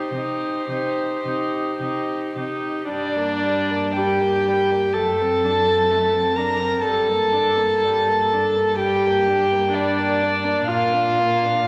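Dark, floating sul tasto violin melody between C5 and Bb5 opens this solemn, yearning excerpt from a slow, rubato G minor string quartet movement at 52-64 BPM in 4/4, set over a second violin's intimate, airy-bowed line with light vibrato and a warm, up-front viola accompaniment, while the close cello bass with vibrato joins at 0.1 s as the harmony moves from Cm to Gm at 2.9 s and on through D7/F# toward Bb in a wet concert hall reverb.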